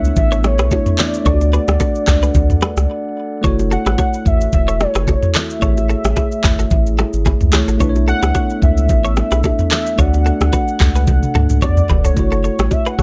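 A light reverb gives this mellow, hypnotic afrobeats excerpt in F# minor a gentle sheen at 110 BPM, with a lightly swung sixteenth-note feel, up-front electronic drums with a knocking kick, handclaps, rim click, shaker and toms, and a deep, round analog bass. A velvety, detuned synth lead with chorus, delay and vibrato carries the melody over a clean tine electric piano heard through its built-in speakers, while glassy, ethereal glass harmonica chords sit in the background until 12.1 seconds. Ringing, hard-handed congas and bongos come in at 0.2 seconds, followed at 0.3 seconds by a twangy, direct-recorded electric guitar riff with chorus and delay, as the chords cycle through Bm11, Dmaj7, F#m7 and Amaj7, with a brief break at 2.9 seconds and a drum fill at 11.1 seconds.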